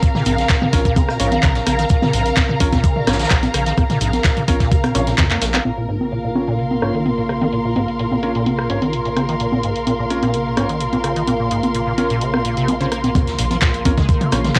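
A squelchy, resonant square-wave acid bass riff drives this hypnotic acid house excerpt in Bb minor at 128 BPM, running the full 14.6 seconds through ensemble chorus, cassette tape coloring and analog delay, with sidechain pumping. Up front, a thumpy sampler-style electronic kick and a punchy analog drum machine of congas, handclaps, hi-hat, rim click and toms set a straight 4/4 pulse, joined by a very quiet, distant brush kit of snare, hi-hat and shaker. The kick and brush kit drop out as a drum fill begins at 5.3 seconds, while filter sweeps on the drum machine, acid bass and piano carry the middle stretch until both return at 13.2 seconds alongside a very quiet electronic impact. Beneath the riff, a round, deep analog bass and a warbling, nostalgic lo-fi pad hold a single Bbm chord, and a dark, lush string section with vibrato and portamento floats distantly above. A clear, intimate grand piano with audible action noise adds low-passed stabs with analog delay. 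The whole piece carries the tape-worn character of a home cassette recording in a moderate studio reverb.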